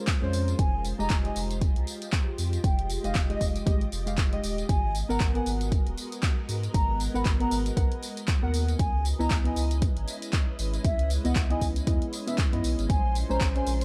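A dry, close sound frames this smooth, moody deep house excerpt at 117 BPM with a swung 16th feel, where an up-front layered kick and a punchy analog drum machine's handclaps, hi-hat and tambourine drive a round sine sub bass, dark nasal chord stabs with tape echo and pumping, and a silky vintage string machine through phaser and ensemble chorus, while a hollow, pure concert flute carries the melody with vibrato over Bbm9, Fm9, Abm9 and Dbm9, and a lush bowed violin section slips in faintly at 12.9 seconds.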